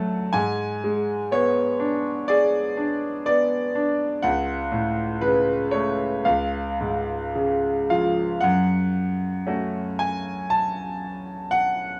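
Classical solo piano, wistful and reflective, unfolds in a slow, rubato 4/4 around 54-63 BPM, a bright, brilliant concert grand sitting up front with deep bass and a natural tone, ranging from C#2 to A5 as chords move from G#dim through F#m/C# and C# before settling into F# minor at 8.4 seconds, all heard through light reverb, small room ambience and the worn, warbling pitch drift of old cassette tape in this brief fragment cut from a longer piece.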